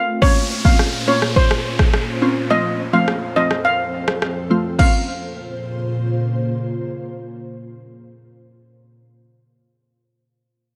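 This sultry, tough dancehall excerpt at 105 BPM in Bb harmonic minor opens on a shimmering, up-front steel pan melody with delay over an ethereal pad of detuned, wave-folded chords that carries ensemble chorus, its own reverb and sidechain pumping. At 0.2 seconds a glassy, crystalline wavetable pluck with chorus and pumping joins, along with an electronic downlifter and an afro-pop kit of deep kick, rim click and crash, tape-tinged and gritty from a vintage 12-bit sampler, which stops at 4.9 seconds. The harmony moves between Bbmadd9 and F inside a lush hall reverb, and the pan drops out at 6.5 seconds while the pluck continues to the close.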